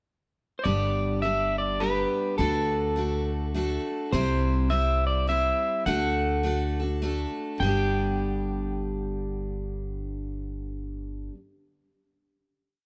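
Nostalgic and heartfelt, this short honky-tonk country waltz in swung 3/4 opens on a pickup bar, then a twangy, slightly broken-up electric guitar through a small old amp sings song-like motifs over a bright, full-bodied steel-string acoustic strumming open-chord eighths with audible finger squeak and a woody, thumpy upright bass plucking root and fifth, in a lightly reverberant room, before settling onto a held final chord at 7.6 seconds.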